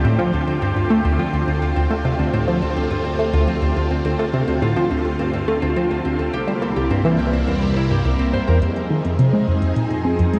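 A steady, straight 4/4 pulse at 105 BPM is driven by a tight sequenced synth riff in the low register, its detuned sawtooth and square-wave tones shaped by a filter pluck and set up front with chorus, phaser and delay. Above it, a phased string machine holds swirling, vintage-sounding sustained chords, bright and evolving under ensemble chorus and phaser, while a concert harp adds ringing, fingerpicked arpeggios echoed by delay. In the background, a warm analog drone supplies the bass from 0.3 s with pulse-width and ring-modulated colour, and a bubbling stepped-filter texture with resonant, random filter steps drifts quietly in the upper register until 8.6 s. At that point the harmony moves from Dm7 and C7 to Fm7, and a faint electronic hi-hat and woodblock with metallic hats appear, re-recorded in a small room and touched with delay. Bathed in a moderate shimmer reverb and carrying a cassette-tape grain, this expansive, cosmic piece of D minor space music is a short cut from a longer work.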